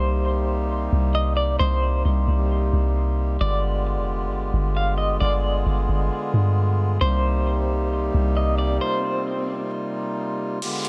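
A half-time 4/4 pulse at 133 BPM carries this spacious, melancholic cloud-rap passage in C minor, where a deep, round 808-style bass sits up front beside a reedy, nasal hand-pumped harmonium holding sustained chords from Cm7 to G7b9 and back. A clean, hollow-bodied semi-hollow electric guitar carries the melody through tremolo and dub echo, while the bass drops out at 8.8 s and an electronic swell and downlifter enter in the background at 9.0 s. At 10.6 s a trap drum kit arrives in the background with a crash and metallic hi-hats, all within an echo-heavy mix of light reverb and digital ambience.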